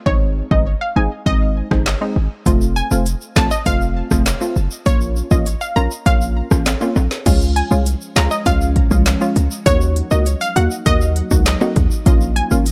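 Sultry and tough, this dancehall excerpt moves at 100 BPM in a straight 4/4, with a hard-hitting 808-style bass of heavy sine weight and an up-front, electronic afro-pop drum kit of deep kick, woody snare, crisp hats, rim click, handclaps and crash, set under chords that run from Ab through F, Bbm, Db and Ebm. A bright, round analog pluck carries the melody with chorus and delay over nasal, detuned chord stabs, while a ringing tube shaker and timbales, played with soft hands, join at 2.5 seconds. At 8.0 seconds a glassy, ethereal FM pad rises in the background with ensemble chorus, phaser and sidechain pumping, though the overall sound stays dry.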